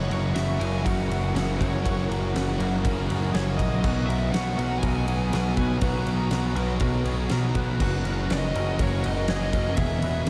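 A growling, overdriven electric bass sits up front in this dreamy, blissful stretch of shoegaze and dream pop rock, cut from a longer piece and moving in a straight 4/4. A huge arena drum kit joins at 0.1 seconds, also up front, with a punchy kick, a fat snare and bright crash and ride cymbals ringing in a hall. Behind them, three riffing guitars build a heavy wall: a thick, dark fuzz guitar with analog chorus, a compressed overdriven guitar washed in reverse reverb, and a very quiet, double-tracked sludgy guitar. A distorted, compressed fuzz lead guitar carries the melody through delay, while a clean, fingered twangy guitar plays arpeggios under ensemble chorus and delay. A deep, moody analog pad enters at 0.2 seconds with slow-attack sustained chords over a harmony that drifts from F#7 to Bmaj7 and back, touching Emaj7 at the close, all of it soaked in a vast ambient reverb with a 9.2-second tail.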